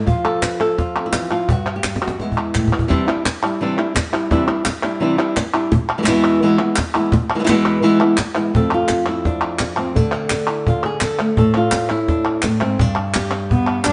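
A straight 4/4 pulse at 170 BPM drives this fiery, passionate flamenco passage, with a snappy cajon struck by hard hands and crisp, dry palmas hand claps sitting close behind it. Up front, the fingerpicked acoustic flamenco guitar carries the melody, ranging from E2 to B4 with a warm tone. A drum fill from 1.8 to 2.9 s leads into a stretch built on Cadd9 and E, and the harmony later moves through F, D5, A5 and G. At 13.5 s a single bowed cello enters as a second line, rich, nasal and slightly boxy, its vibrato and portamento adding an expressive, soft-edged voice just as the clip ends. The group plays live together in a moderate stone room whose reverb gives a natural halo, and the top end tops out at 10.4 kHz.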